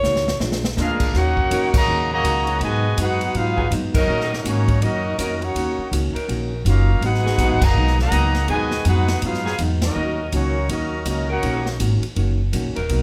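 Swinging at 163 BPM in Eb minor, this sultry, dramatic big band excerpt opens with a drum fill on a polished kit with dark cymbals and a punchy kick, over woody pizzicato upright bass and a clean, hollow-body archtop guitar, before an up-front vintage trumpet section carries the melody from 0.8 seconds with vibrato, a bright, soft-attack trombone section takes the second line, a very quiet, mellow baby grand piano flickers briefly, and a background saxophone section holds sustained chords from 1.5 seconds, the band striking accents across a moderate studio reverb.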